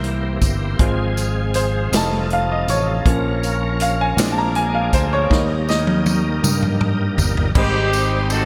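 Hopeful and soulful, this slow gospel excerpt in a straight 6/8 opens with a clear, slightly worn grand piano taking the lead over sustained chords from a bright, shouting tonewheel organ with slow rotary speaker and light overdrive, a punchy up-front fingered electric bass, a natural drum kit with a punchy kick that plays a fill from 5.3 seconds, and a jingly tambourine entering at 0.4 seconds, before a tight, smooth horn section with digital delay arrives with the melody at 7.6 seconds, all set in a lush hall reverb with a bright 1980s-style digital sheen.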